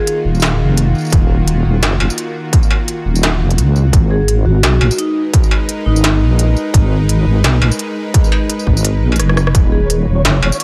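A ringing vibraphone note and a tense, string-like drone with sidechain pumping open this tense, cinematic fragment of half-time drum and bass at 171 BPM in Eb minor, moving from Ebm to Abm and back. An industrial kit of clanging snare, crisp hats, rim clicks, struck metal and tambourine enters, followed by a deep wobbling bass with chorus, and a distorted electronic kick joins at 1.1 seconds, while the vibraphone returns with a short tape-echoed melody around 4.1 seconds. After a drum fill, a grainy, flickering texture with reverb surfaces at 9.9 seconds as the drone carries on to the end.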